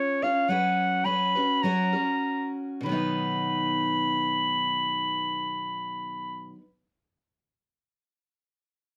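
A soft-attacked clarinet with a smooth top carries the melody up front in a classical style, over a close, detailed picked steel-string acoustic guitar with an auditorium body in this hopeful, pastoral acoustic folk fragment in B major and free time. The opening slows through its first 2.9 seconds, moving from C# through F#sus4 to F#, then settles on B as the second section begins. Moderate studio reverb gives the pair a gentle sense of space, and both parts stop at about 6.5 seconds.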